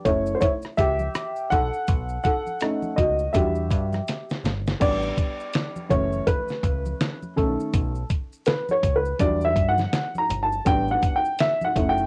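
A dusty, cassette-worn home recording of cool, mellow jazz-hop, cut from a longer piece, where a dark, woody upright piano leads with a short-sustained solo over F#m7, B9, Em9 and A7sus4 changes, backed by a round dub-style picked electric bass, a gritty sampler-style kit with a thumpy kick, fat snare and a drum fill at 4.1 seconds, and hard-handed congas and maracas tucked in the background.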